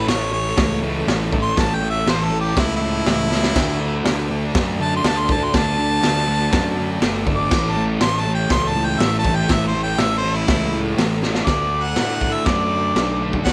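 Garage rock at 121 BPM in A major, raw and swaggering, with a bright, close-miked harmonica soloing up front over a thick, double-tracked fuzz guitar riff, a warm, overdriven picked bass, a reedy, heavily vibrato-laden combo organ holding very quiet chords, and a punchy, saturated drum kit in a small pumping room that enters at 0.1 seconds and fills at 3.3 and 11.2 seconds, the chords moving between A and D before the piece shifts to a new section at 11.5 seconds.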